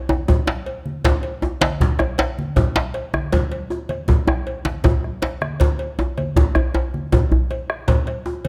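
A drum fill opens this short cut from a longer West African traditional piece, setting an earthy, powerful mood at 105 BPM in a straight 12/8. The bombo has a round, close tone and leads the ensemble in level. One djembe carries a vintage, band-limited character with metal rattles buzzing around its medium-tuned head, and it falls silent at 7.5 seconds while the others carry on. A second, medium-tuned djembe sits up front, dry and intimate under soft hands. Low-tuned congas with a bright, thin skin sound from a livelier room, and a metallic cowbell sits furthest back in the blend. A moderate recital hall reverb surrounds the detailed close microphones, and the full groove runs from 1.0 seconds to the end at 8.5 seconds.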